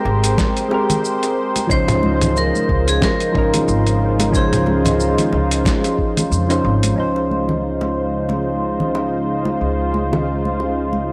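A ringing, metallic vibraphone melody played with hard mallets and a fast motor vibrato floats over round, mellow electric-piano-like synth keys and a thick, detuned unison pad in this blissful, sunny chillout excerpt at 91 BPM with a swung 16th-note feel, moving from Abmaj9 to Dbmaj9, while a woody pizzicato upright bass, hard-handed bongos and congas, a gritty, tape-warm soul sampler kit with a fat snare and a thumpy electronic kick drive the groove until the vibraphone drops away at 6.3 seconds and the kit at 6.9 seconds, all set in a dry, gritty hardware sound with light digital reverb.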